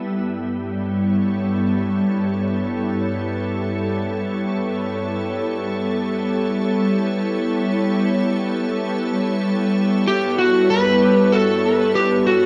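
A soft, pure, full-bodied organ-like pad with ensemble chorus holds a sustained A7 chord in free time for this peaceful, hazy ambient dub piece in A mixolydian, set in a dark concert-hall reverb, before a slightly broken-up electric slide guitar, played with fingerpicks and trailed by dub echo, enters at 10.1 s with a short melody as the cut ends at 12.5 s.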